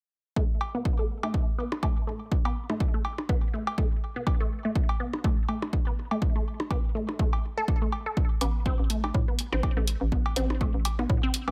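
Minimal techno at 123 BPM in A minor, hypnotic and clinical, built on a swung 16th-note groove where a punchy, tape-warm electronic kick sits up front beneath a squelchy, resonant blip pluck riff colored by phaser, gritty 12-bit sampler texture, digital delay, sidechain pumping and a filter sweep, with layered cowbell and percussion blips trailing tape echo. At 8.4 seconds a hollow, bouncy FM bass with a knocking attack and pumping sidechain joins alongside an up-front electronic hi-hat re-recorded in a small room. A digital ambience surrounds this short cut from a longer piece.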